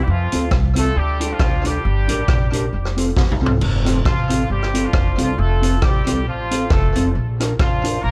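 Ska at 136 BPM in F major, cheerful and joyful, with a swung eighth-note lilt in 4/4. A clear, vintage-toned horn section carries the melody from the opening moment, playing in octaves as an ensemble with light vibrato and a touch of tape echo. Beneath it, a woody, thumpy upright bass with gut strings is plucked pizzicato, while a mellow, clean electric guitar with a dark tone is fingered for accompaniment. The street-band drum kit sits up front with a high-tuned snare, a boomy kick, dark cymbals, hi-hat, rim clicks and toms, along with a rolled-off top and a small-room sound. A drum fill at 3.2 seconds leads from the opening section into the next at 3.6 seconds, and the harmony moves through F, Dm and Gm, back to F, before landing on Bb at 7.2 seconds. The recording is dry, and this brief passage is cut from a longer piece.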